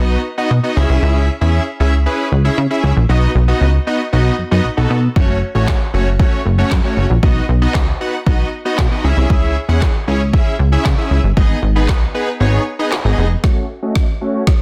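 A plucky, wave-folded analog bass drives this energetic dance-pop excerpt from the start, pumping under a big, bright, detuned polysynth washed in chorus, while a deep house kit with a punchy kick, woody snare and handclaps joins at 5.2 seconds, drops its kick at 12.4 seconds, and then fills through a build-up as the synth's filter sweeps in a dense, heavily limited mix with light digital reverb.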